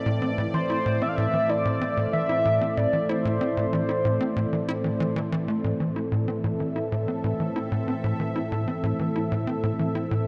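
Hypnotic and expansive, this ambient, sequencer-driven space music moves at 94 BPM in A minor, held on a single A minor chord in a piece cut from a longer work. A tight, punchy sawtooth sequencer bass drives a riff with a filter pluck, carrying a filter sweep through the first 5.6 seconds. Above it, an evolving, detuned pad sustains resonant chords with ring modulation, while a shimmering, retro pulse-width lead sings a short melody from 0.5 to 5.0 seconds, all set in a vast, echoing reverb that keeps the top end soft.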